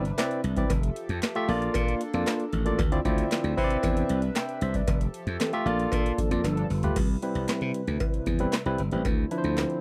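Smooth and danceable, this early-eighties boogie funk groove moves at 115 BPM in a straight 4/4, centred on C major and cut from a longer piece. A booming analog drum machine sits up front with a deep kick, crisp snare, metallic hats, handclaps, toms and crash cymbal, its snare, clap and hats carrying a short room sound, while a close, dry cowbell ticks along in the background. A growly, punchy slap bass and a barky, clean tine electric piano played through a combo amp share the foreground, and a shimmering chorused pulse-width pad holds slow-attack sustained chords behind them. The harmony glides through lush ninth and seventh chords such as Cmaj9, Fmaj9, Bbmaj7 and Dm9. A band accent hits at 4.9 seconds, and a round, warbling synth brass line with chorus and slapback echo appears briefly from 5.4 seconds, ahead of a drum fill that leads into a new section at 7.0 seconds. The overall sound is a dry, close studio recording with little reverb.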